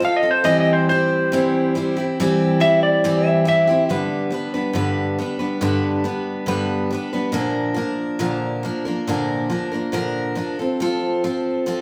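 A slightly broken-up, compressed electric slide guitar takes a short, up-front solo over a bright, full-bodied picked acoustic guitar in this jangly, open-road rock excerpt, a live band sound in a large reverberant studio room, with the slide dropping out at 3.9 seconds as the acoustic carries on alone through G, B-flat and F until 11.8 seconds.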